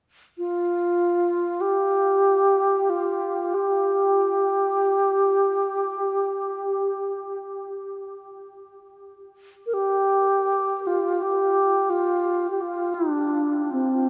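Haunting and spacious, this meditative world-music excerpt drifts in free time, carried by a single alto flute that enters at 0.4 seconds and plays alone until 14.1 seconds. The flute sits up front with a pure, warm, tongued tone, vibrato and lifted highs, touched by analog delay as it moves between C4 and Bb4. A huge, wet ambient reverb with a long 7.6-second decay soaks the dreamy mix.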